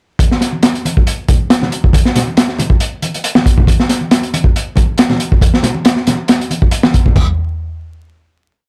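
Crackling with vinyl noise in a small room, this short, swaggering, raw breakbeat piece at 138 BPM rides a crunchy, gritty, saturated drum kit up front, with a dark, rolled-off sound, a high-tuned snare, a tight kick, hi-hat, splash cymbal and toms in a looped, edited break, while vintage, band-limited congas sit in the background from 0.2 seconds until the groove gives way to a final hit at 7.2 seconds.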